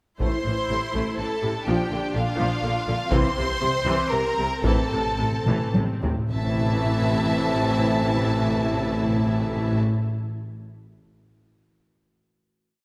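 Dramatic and relentless, this short, complete cinematic piece is an epic orchestral film score in 3/4, moving between 104 and 124 BPM in A phrygian and slowing from 2.4 to 6.3 seconds. Violins carry a lush, intense melody with vibrato, set at a distance, while a second violin line doubles the tune at the octave and in thirds. Violas drive a focused rhythmic ostinato and sustained chords, and a smooth cello section sits in the background with a driving bass ostinato, doubled by bowed double basses. A mellow French horn section, also in the background, adds short accented chords and sustained harmony over the progression Am, Bb, C and back to Am. A taiko ensemble strikes heavy, compressed, saturated single strokes until 6.3 seconds, ending with a drum fill, while hard-mallet timpani play single strokes on bass notes and roll through a fill from 4.6 seconds. The theme gives way at 6.3 seconds to a final chord held in a moderate scoring-stage reverb.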